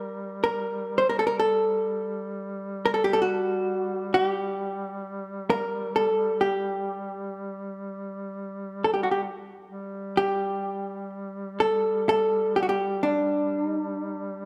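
Rubato in an uneven three, this mournful Caucasian folk lament sets a clean, dark, picked hollow-body electric guitar up front to carry the longing melody, while a warm duduk holds a low drone with vibrato and scooped notes, both sounding throughout the excerpt in a moderate scoring-stage reverb and shifting into a new section at 9.7 seconds.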